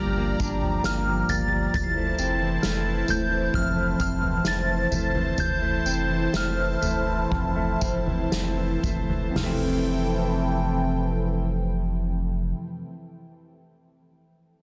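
A clean semi-hollow electric guitar spins chorus-soaked, tape-echoed arpeggios through this dreamy, ethereal dream pop fragment, alongside a pure FM synth bell melody that stops at 7.8 s, a swirling detuned sawtooth pad, a deep round sine sub bass, a delicate, slightly out-of-tune celesta, and a distant, roomy soft-mallet drum kit with a punchy kick that enters at 0.4 s, with the pace slowing from 1.7 s under a dense, heavily limited master.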